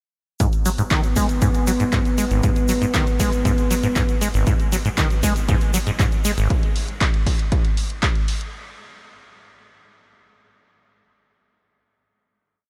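This is a trippy and driving acid house piece at 118 BPM in 4/4 with a straight feel, sitting on a single G# minor chord throughout. An up-front, squelchy sawtooth acid bass carries a resonant 16-step riff with fast-attack, decaying notes and a filter sweep, thickened by tube saturation, lush chorus and analog delay. Beneath it, a dry, punchy electronic kick drives a four-on-the-floor pulse, joined by a programmed analog drum machine playing closed and open hats and a clap backbeat. A nostalgic, lo-fi pad built from square and triangle tones holds dark, warbling sustained chords with a slow attack, long release and a held high note, colored by chorus and built-in reverb and pumping against the kick. A grainy acoustic egg shaker sits in the background with hand-played sixteenths in a live room. Everything enters at 0.4 s; the bass, pad and shaker stop at 6.5 s, and the kick and drum machine carry on to 8.1 s and 8.5 s, with light reverb over the whole mix.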